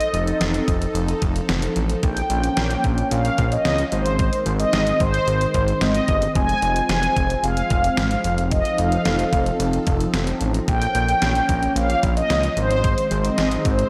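A dreamy, reverb-soaked synth-pop excerpt in F minor at 111 BPM, nocturnal and melancholic, where a mellow, round synth brass carries the melody with chorus, delay and vibrato over a swirling, evolving phased analog pad holding sustained chords. A fat, thick sawtooth bass with a filter sweep sits up front from 0.1 seconds, while a detuned 8-bit digital drum machine with a thumpy kick, a medium-tuned snare and hi-hat sounds re-recorded in a large room. The harmony moves through F7, Bbm, Ab and Fm.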